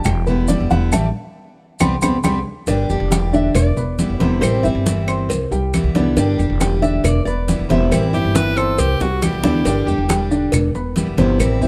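A thumpy, woody upright bass sits up front in this sunny, danceable piece of Cuban son and guajira, cut from a longer performance at 138 BPM in a straight 4/4. A dark, boxy baby grand piano spins arpeggios throughout, taking the spotlight in the opening with a band accent, while a picked dreadnought steel-string guitar plays accompaniment close in the mix over a cycle of Em7, Am7, Cmaj7 and G5. Congas with soft hands, tight high-tuned bongos with cowbell, woody claves and grainy, saturated maracas keep a percussion bed in the background, with drum fills marking the turns. A fingerpicked classical nylon-string guitar carries a short melody from 3.3 s, and an edgy, forceful tenor saxophone with vibrato adds a punchy pop-style second line near 8.1 s. The sound is close and intimate, with the piano's action noise audible and only a touch of room around the players.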